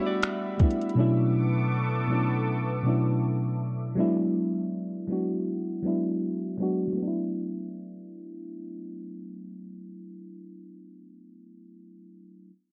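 Light reverb and a low-pass filter soften this short cut from a longer contemporary R&B piece, with a filter sweep across its first 7 seconds. At 80 BPM in D major, tuned to A4 = 444 Hz with a swung sixteenth feel, a round, dark FM electric piano with chorus carries the chords from G6 through Bm11 and E7 to D69. From the very start it is briefly accompanied by a thick, detuned sawtooth pad with chorus and phaser and a clean, direct-recorded guitar arpeggio with delay. A soft-kicked electronic drum kit of finger snaps, metallic hi-hat and kick enters at 0.2 seconds and stops by 1.0 seconds. The mood is tender and dreamy, with the piano holding the harmony on its own until 12.5 seconds.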